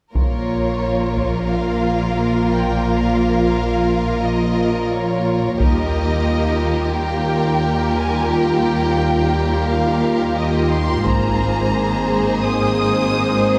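Dramatic and relentless, this cinematic, epic orchestral film cue moves at 88 BPM in a straight 4/4, cut from a longer piece and built over a progression from Bbm to Ebadd9 to Abadd9. A dark, distant violin section carries the expressive, vibrato-laden melody up high, while a second, smoother violin section sings a lush supporting line beneath it. Woody, close violas and mellow French horns in a classical style hold the harmony in the background, and the cellos and a rich, expressive double bass section anchor the low end with bowed, lush tone. A taiko ensemble struck with hard sticks lands in short bursts at 0.2, 5.6 and 11.1 seconds, marking each chord change with an acoustic, live-room punch. A moderate concert hall reverb gives the strings and horns a spacious, grand setting.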